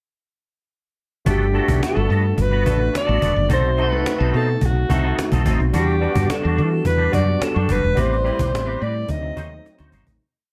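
Breezy and upbeat, this polished 1980s jazz-funk pop piece moves at a straight 107 BPM in G major, with a brief pickup before the verse. The barky tine electric piano enters at 1.2 seconds with lightly overdriven, chorused push chords in rootless voicings dotted with grace notes, and at 1.3 seconds the rest of the band arrives over a Gmaj9, B7b9, Em9, Am9 and D7b9 progression. A woody fretless bass sits up front with a round, punchy tone and an agile syncopated line, while a snappy cajon with snares, played with soft hands, sets a sixteenth-note studio groove. A clean, twangy electric guitar with ensemble chorus picks a crisp sixteenth-note rhythm riff underneath. On top, a breathy alto saxophone carries a motif-based jazz melody, mellow with vibrato and subtone, its tone distant and roomy even while up front. A drum fill arrives near the close, and the whole piece sits in light reverb and small room ambience as it fades out from 8.0 seconds.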